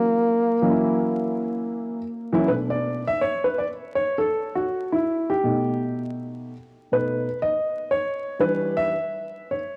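Heard through the haze of a home cassette recording with vinyl crackle and a lush hall reverb, this smoky, mellow hip hop fragment opens with a warm French horn in classical style, touched by light vibrato and analog delay, singing a brief line over a dark, intimate baby grand piano until 2.1 s, after which the piano plays alone from 2.5 s, its short sustain and audible action noise up front as the harmony moves from F#7 through Bm7 and B7 to Em7 over a swung sixteenth-note feel.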